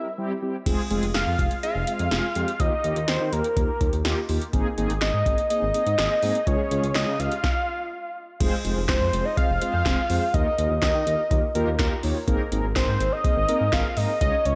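A straight 4/4 pulse at 124 BPM drives this melancholic, nocturnal synth-pop piece in F minor, cut from a longer work. The fat analog lead and the mellow synth brass open together before the smooth synth bass and the electro analog drum machine join at 0.7 seconds. The drums sit up front with a tape-warm deep kick, punchy snare, metallic hats, handclaps and crash cymbal, with a short room on the snare, clap and hats. The detuned sawtooth lead, also up front, carries the melody with vibrato, a sub octave, phaser and analog delay. The brassy, round, dark pads, shaped by a filter sweep and chorus, hold the harmony over a cycle of Fm, Ebadd9, Abadd9 and Db, while the sustained sawtooth-and-square bass adds its own vibrato underneath. A stop at 7.4 seconds precedes the second section at 8.4 seconds, and the entire mix is soaked in a dreamy plate reverb that lends a hazy, after-hours glow.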